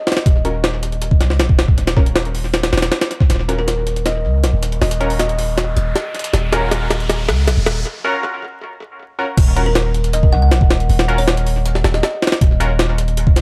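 Gritty, pitched-up jungle breaks with a thumpy kick and high-tuned snare drive this frenetic, raw drum and bass fragment at 158 BPM in Eb minor, over a deep, sustained 808-style sine bass, nasal band-passed sawtooth chord stabs soaked in chorus and dub echo under a filter sweep, a woody kalimba with tape echo entering at 3.6 s, and an electronic riser that builds from 4.3 s into a break at 7.9 s before the drop, the whole mix heavy with echo and vinyl crackle in light digital ambience.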